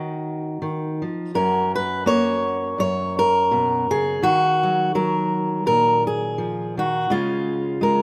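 Peaceful and hopeful, this short excerpt is cut from a longer folk piece for solo fingerstyle acoustic guitar in F# major, moving at an unhurried 83 BPM in 4/4 with a light swing on the eighth notes. A fingerpicked steel-string acoustic guitar plays alone for the full 8 seconds, ranging from F#2 up to C#5 and sitting up front with a warm, auditorium-sized body to its tone. The harmony opens on a lush D#m9, settles onto F# at 1.3 seconds, turns to D#m at 4.2 seconds and reaches C# near the close. Light studio reverb adds a gentle halo around the strings, while the rough home-demo mix keeps the sound intimate and unpolished. The guitar is tuned slightly sharp of standard pitch, with A4 at 441 Hz.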